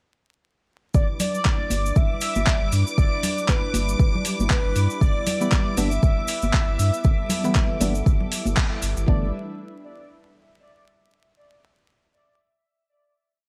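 A four-on-the-floor electronic kick, deep and tape-warm with small room ambience, drives this soulful deep house piece at 118 BPM in 4/4 with a 16th-note swing, while a gritty, compressed sampler-style kit adds programmed hats and handclaps from 1.2 s. Bright congas play syncopated patterns in the background, and a grainy cabasa ticks through hand-played sixteenths. A round sine sub bass carries a syncopated riff in G major under a smooth, detuned analog pad, both pumping against the kick, as a shimmering string machine holds a single high violin note through its ensemble chorus. On top, a velvety sawtooth-and-triangle synth lead with vibrato, chorus and tape echo spins short call phrases, and from 5.4 s a hollow, wave-folded organ stab joins with phased, rootless chord hits. The groove hits a band accent at 8.6 s before settling onto a final chord at 9.1 s, all wrapped in a dry, gritty hardware sound with light reverb and vinyl crackle.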